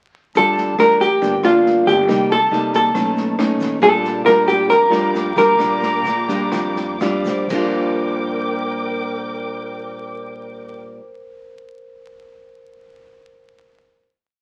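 A straight 4/4 bossa nova groove at 118-138 BPM opens the piece: the big-band kit plays a brush pattern with punchy kick, medium-tuned snare, rim click and crash cymbal, and a grainy egg shaker sits very quiet beneath it. Up front, the nylon-string guitar fingerpicks thumb bass and syncopated plucked chords. The upright bass, woody and thumpy on gut strings, stays in the background with dotted root-and-fifth figures. A clean hollow-body electric guitar carries the dark, motif-based melody in Bb major, with a breathy flute group doubling it in octaves, and from 0.8 s a vibraphone with its motor off scatters ringing notes. Muted strings enter at 3.8 s as a veiled, lush, distant pad, just as the tempo starts slowing toward a final chord, and the vibraphone rings on until 14.1 s. The mood is sunny and relaxed, framed by moderate reverb and the crackle of a very old 78 rpm record.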